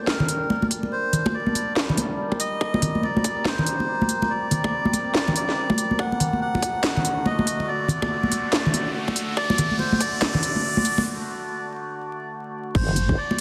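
A dense, heavily limited mix with vinyl crackle and a moderate echo-chamber reverb frames this dark, brooding deep dubstep excerpt in G harmonic minor at 142 BPM with a swung half-time feel, where a reedy, breathy melodica carries the melody through dub echo over a nasal, overtone-sweeping chorused drone moving from Gm to D, crisp garage hats, cracking snare, handclaps and crash sit up front beside bright, high-tuned hard-handed congas, a tight tape-warm electronic kick drops out at 10.1 s as an electronic riser builds into the break, and a heavy, saturated sawtooth wobble bass lands on G1 with the returning kick at 12.8 s.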